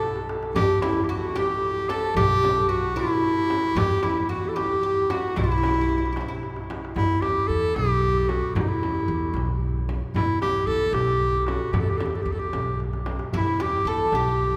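A straight 6/8 pulse at 75 BPM, counted in dotted quarters, carries this hypnotic, soulful excerpt of an Arabic maqam ensemble piece in E minor. A clear, punchy clarinet, close-miked and played in a classical style, takes the solo melody up front. Beneath it, a plectrum-plucked fretless oud with doubled strings adds a woody second line, drops out at 6.3 seconds and returns at 13.3 seconds. An upright bass plays pizzicato on steel strings in a low register. A large clay-shell darbuka with natural skin, played with soft hands, and a frame drum struck with hard hands sit in the background, with short drum fills opening the piece and marking its later turns. The ensemble is bathed in a wet cathedral reverb from a church or concert hall, giving it a long, spacious tail.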